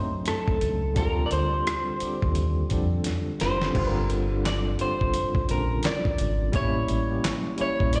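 R&B and neo-soul in a smooth, soulful mood, this swung passage cut from a longer piece opens with a barky, lightly overdriven tine electric piano carrying tremolo and slapback echo over a deep, round, punchy fingered bass, joined at 0.3 s by a dark, slightly broken-up picked guitar melody through a small old amp with spring reverb and analog delay and by a gritty, compressed sampler-style drum kit with thumpy kick, fat snare, handclaps and rim clicks that plays a fill at 3.0 s, all heard as a live gig through the venue's PA in a recital hall.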